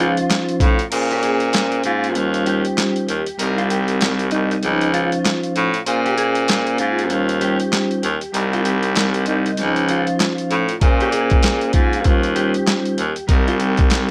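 Dry and gritty, this moody, reflective boom-bap hip-hop excerpt swings over a repeating four-chord loop, with a breathy, whispered baritone saxophone carrying the bass up front and a metallic, ringing vibraphone, played with soft mallets and slow motor vibrato, filling in the harmony. A dark, clean electric guitar sits in the background with chorus and tape echo on its melody, while a very quiet, tight trumpet section adds mellow stabs. The compressed, pitched-down sampler drums enter at 0.2 seconds with a medium-tuned snare, hi-hat, handclaps and crash, and their thumpy kick drops out from 0.9 to 10.8 seconds.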